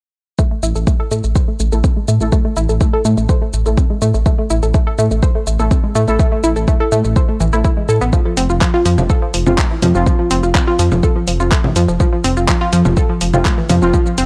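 An up-front analog pluck carries this cinematic, hypnotic melodic techno excerpt, spinning arpeggios from E3 to C5 with a round, bright, wave-folded tone that is thickened by chorus, tape echo and sidechain pumping while a filter sweep runs across it. Beneath it, a menacing detuned saw bass swells in from 0.6 seconds, its saturated, evolving sound sitting up front and pumping with the sidechain. A deep electronic kick anchors the straight 4/4 pulse at 124 BPM, joined by a tape-warm deep house kit of congas, handclaps, hi-hat and shaker, both re-recorded in a small room. From 1.7 seconds a punchy, brassy synth stab sits in the background, also chorused, echoed and filter-swept. The harmony in A minor moves from A5 to F5 at 8.1 seconds, and the whole recording has a dry, gritty hardware character with transformer saturation and cassette tape grain.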